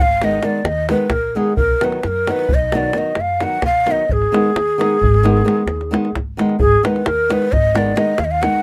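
Light reverb gives this short clip of Balkan wedding-band folk a gentle sense of space, with a breathy, end-blown ney carrying the restless, bittersweet melody up front, its vibrato and crisp attack sitting over a fingerpicked flamenco guitar with old, woody strings. A growly pizzicato upright bass and a tight, dry davul hold the straight 11/8 pulse at 263 BPM in eighths, in Ab dorian sharp4. The harmony moves from Abm to B at 1.6 seconds and back to Abm at 4.1 seconds.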